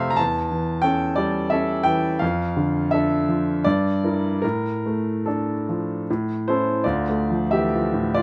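Romantic classical character piece for solo piano in triple metre with flexible rubato, its bittersweet, brooding mood carried by a clear, natural grand piano with long sustain set up front in a moderate studio room, its harmony moving through A7/E, Dm/F and Em7b5/G before settling on A and then Dm as the brief passage shifts into a new section at 6.8 seconds in this short extract from a longer work.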